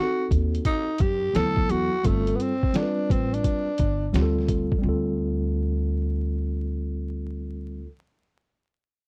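A growling tenor saxophone leads this short, nocturnal jazz-hop clip at 86 BPM in D dorian, its breathy, raspy subtone and scooped notes carrying the melody until 4.2 seconds. A mellow tine electric piano plays clean accompaniment through chords like D7b9 and G7sus4, while a woody pizzicato upright bass and a muffled, pitched-down sampler-style drum kit with a thumpy kick add a swung, cool groove; the drums drop out at 4.8 seconds. The sound is dry and close, in the manner of a 1970s studio, with vinyl crackle over the top.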